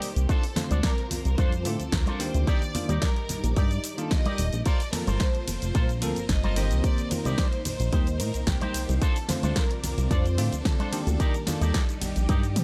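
A punchy, up-front electronic kick and a house kit with a punchy snare, hi-hat, ride, shaker and toms drive this sleek, cosmic nu-disco excerpt, where a glossy, nasal chorused synth bass pumps beneath a lush string machine in the background, a twangy envelope-filtered guitar riff, bell-like tine electric piano, close bright congas and a distant, smooth violin section carrying the melody through tape echo, all in a dry, echo-heavy mix moving from Dm7 through Ebmaj7, Gm11 and Cm7.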